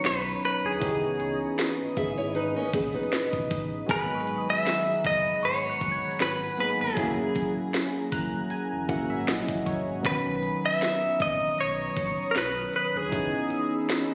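A clean, twangy electric guitar carries the melody from the start of this longing, sensual contemporary R&B excerpt, alongside round analog keys with chorus, a glassy FM pad in the background and a trap drum kit with a knocking kick, sharp snare and crisp hats. The groove sits at 78 BPM in 4/4 with a light sixteenth-note swing in C# dorian, and a deep sine sub bass with octave slips in almost at once. Lush ninth chords pass through Bmaj9, C#m9, G#m9 and F#9. A bright, fingerpicked nylon-string guitar adds delayed arpeggios between 2.0 and 3.9 seconds, after which a soft, warbling vintage bell shimmers high in the background with chorus and delay. The keys play a fill from 7.7 to 10.0 seconds, and the whole mix carries light reverb, digital ambience and compression, with the character of a phone recording in the room.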